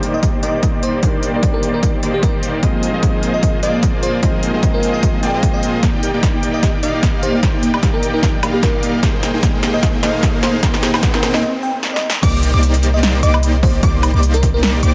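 Dreamy and lush, this future bass passage is cut from a longer piece and moves in a half-time feel with a light swing on the sixteenths. A huge, detuned supersaw riff sits up front throughout, pumping against the sidechain under a low-pass filter, while a dark, vintage baby grand piano adds accompaniment with digital delay until 5.9 seconds and a sparkling, bell-like FM electric piano carries the melody in the background through chorus, phaser, cassette tape and tape echo. Punchy overdriven electronic kicks and a big-room dance kit with crisp hats, snare, crash and woodblock drive the build-up, which brings in a round, tine-like synth pluck playing gentle arpeggios at 5.8 seconds, alongside drum fills and a very quiet riser. After a short break, the drop lands at 12.2 seconds, where a deep, boomy 808-style bass enters up front and a detuned, wave-folded unison pluck arpeggiates on a single high note with a filter sweep. 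The harmony circles from Cm9 through Bb9sus4, Ebmaj7 and Abmaj9 before returning to Cm9, all held in a light reverb.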